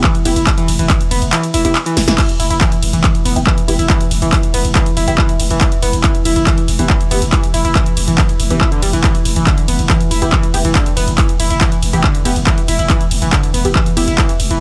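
This dark, relentless stretch of driving peak-time techno, cut from a longer piece, opens with everything in place at once: a heavy, layered electronic kick, a punchy analog drum machine with snare, handclaps, hi-hats, ride and crash, and a growling, buzzy 808-style bass pumping beneath them. Over the top, an overdriven synth lead screams out a gritty, guitar-like riff, bright and distorted with chorus, vibrato and a digital delay, while sidechain pumping makes it breathe with the beat. Further back, a muted, detuned dub chord stab flickers through a phaser and ensemble chorus, and a deep, moody ambient pad drones underneath, slowly evolving with its own chorus and built-in reverb. The kick drops out from 1.3 to 2.2 seconds, with a drum fill landing at 2.0 seconds before it returns. The drum machine sits up front with a tape-warm punch, its snare, clap and hats caught in a short room, and the overall mix stays dry and loud.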